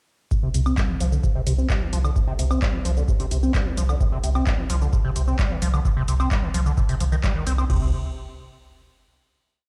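Raw and playful, this short acid house piece rides a deep, four-on-the-floor analog kick with toms and crash, metallic hats, cabasa, woodblock and handclaps, while a squelchy, resonant square-wave acid bass riff with accents and slides runs a filter sweep through phaser, overdrive and delay over a round sine sub bass playing off-beat, both basses pumping with sidechain, before everything drops to a final note at 7.7 seconds that rings out in a large, bare-room reverb.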